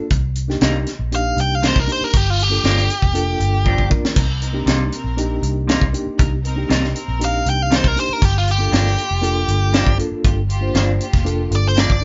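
A reedy electric piano with fast tremolo opens this smoky, soulful straight-eighth soul blues excerpt at 118 BPM in G minor, joined almost at once by a dark, round, punchy muted bass and a tight funk kit with a high-tuned snare, while a clean semi-hollow guitar adds stabs through spring reverb, a bright, overdriven lead guitar carries the melody from 1.2 seconds and again from 7.2 seconds, and a bowed string section with vibrato enters at 4.2 seconds holding smooth, sustained chords, the band sounding live together in one lightly reverberant room over Cm7 and Gm7 changes.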